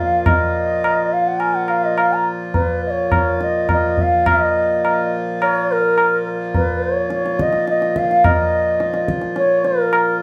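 Introspective and solemn, this fragment of Hindustani classical music moves at 105 BPM in 7/4 with a straight feel, set in raga bhairavi on Bb. An airy, mellow bansuri sits up front with a bamboo tone, tongued notes, vibrato and rolled-off highs, carrying the melody within a range of Bb4 to Bb5 over a reedy, breathing pedal harmonium drone that sounds close-miked, dry and full. High-tuned tabla with a short ring enters at 0.3 s, close and upfront, while the whole is framed by a wet studio ambience heard from further back in the room.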